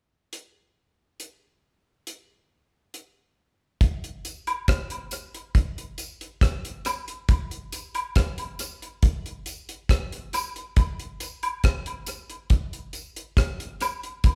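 This reggae excerpt opens at 0.3 seconds with a deep drum kit alone, its hi-hat, kick drum and rim click sitting dry and up front, with a tight kick. The mood is warm and uplifting, carried at 69 BPM with a straight feel in 4/4. At 4.2 seconds a lighter layer of tambourine and woodblock joins, blended with egg shaker and group handclap, heard farther back at a lower level in an intimate small-room sound with an analog delay trailing its hits. The arrangement shifts into a new section at 3.8 seconds, just before this percussion arrives, and both parts carry on to the end. The whole band sounds as if it is playing live together in one large studio, with a moderate reverb giving the space some air.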